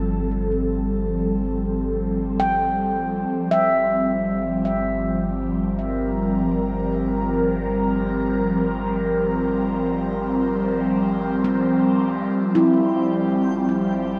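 A wet cathedral reverb with a long decay surrounds this melancholic, reflective ambient piece, which floats in free time and is cut from a longer piece. Up front, an airy, breathy pad holds sustained chords with slow attacks and long releases, colored by chorus and phaser. A mellow, ringing handpan played with soft fingertips spins meditative arpeggios through a delay. Beneath them, a deep, round sine sub bass holds a low G and fades out over the first 12.4 seconds. The harmony drifts from Fadd9/G to Gm and settles on Fsus2/G at 12.4 seconds. Shortly after, at 12.9 seconds, a faint, twinkling granular texture with an octave-up shimmer enters in the background.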